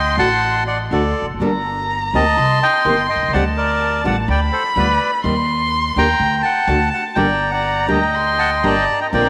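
A reedy, bright bandoneon carries the melody up front from the start, joined by a distant, bowed solo violin singing an expressive second line with vibrato and portamento, a woody, thumpy pizzicato upright bass on gut strings, and a full-bodied, fingerpicked nylon-string guitar with audible finger squeaks. This tense, dramatic tango in G harmonic minor moves at 124 BPM in 4/4 with a rubato feel, bathed in a wet plate reverb. At 9.1 seconds a clear, focused string section adds brief bowed stabs in the background just as the excerpt is cut off.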